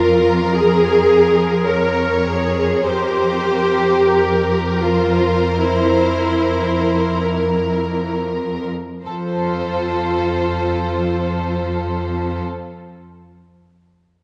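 A rubato 4/4 pulse at 30-54 BPM, slowing down through the first 9.1 seconds, carries this yearning, elegiac classical movement for string orchestra, cut from a longer piece, where a lush violin section sings the melody with vibrato alongside a warm second violin line, an up-front viola section supplies rich accompaniment, and a focused, up-front cello section anchors the bass on F2, the bowed ensemble sitting in a wet concert hall reverb as the harmony moves from Bb5/F to F at 9.1 seconds.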